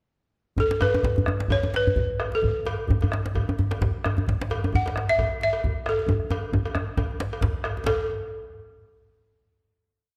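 At 0.6 seconds a buzzing, woody balafon sounds up front together with a dark bombo and two djembes, launching a powerful, festive West African drum ensemble piece in A major pentatonic at 132 BPM in 4/4 with a light swing on the sixteenths. A metallic cowbell joins a moment later with a bell pattern. The close, dry balafon carries the tune with motif-based call phrases played with rubber mallets between A4 and F#5. Beneath it the bombo keeps an evenly spread pattern. One djembe, very quiet and cracking, adds another evenly spread pattern, while the other, played with soft hands and sitting up front, delivers warm lead drum phrases. The tempo pushes faster throughout, a drum fill arrives at 6.1 seconds, and a final note at 7.9 seconds rings out in the generous scoring stage reverb to close this brief whole piece.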